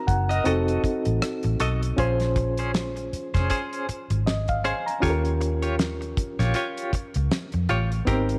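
A barky, lightly overdriven electric piano with fast tremolo opens at 0.0 s, joined at 0.1 s by a round, foam-muted fingered bass and a damped 70s drum kit with fat snare and tight kick, then at 0.3 s by a twangy, compressed clean electric guitar riff with tremolo, in a bittersweet, smooth slice of lush 1970s-style soul at 79 BPM on swung 16ths, moving through F7b9, Bbm9 and Eb9 in light small-room reverb.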